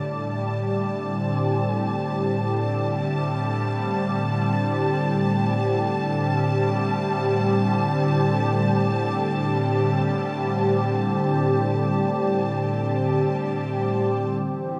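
A detuned sawtooth pad with a slow attack and a moving notch opens this serene, melancholic ambient excerpt in free time, holding a smooth, up-front Csus2/A chord under chorus and shimmer reverb, with tuning set to A4 = 439 Hz. From the first moment, a bowed studio violin section adds a clear, focused high A with vibrato, sitting quieter than the pad and also bathed in shimmer. A wet plate reverb of 3.1 seconds, studio ambience and a cassette-tape character frame the whole passage until it is cut at 14.8 seconds.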